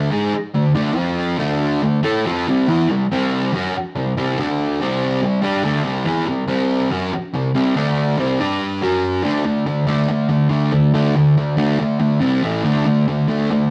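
Rock in a rowdy, raw mood, this short cut from a longer piece features a single electric fuzz guitar carrying the whole passage on its own. The guitar is dark and distorted, picked and double-tracked, sitting up front in the mix as it works through power chords built around D5 and C5, with brief turns to F5, G5 and F#5. At 9.2 seconds the music moves into a new section that returns to D5 before a quick C5, A5 and D5 flurry near the close at 13.7 seconds. A moderate stone-room reverb surrounds the part, and the rough rehearsal-room sound carries a layer of warm saturation.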